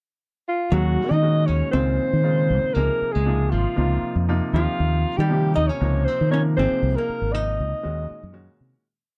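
A mellow alto saxophone leads this short, nocturnal and intense jazz piece, entering on a pickup at 0.5 seconds with a motif-based melody marked by light vibrato, scooped notes and a slapback echo, while a punchy, up-front fingered electric bass drives a syncopated riff beneath it. A dark, clean, hollow-body archtop guitar carries a picked second line in octave doubling, and a clear grand piano adds syncopated chord stabs in quartal voicings over moody minor-ninth and dominant-seventh harmony. The close, dry 1970s-style studio sound keeps every part immediate until the piece fades out from 6.8 seconds.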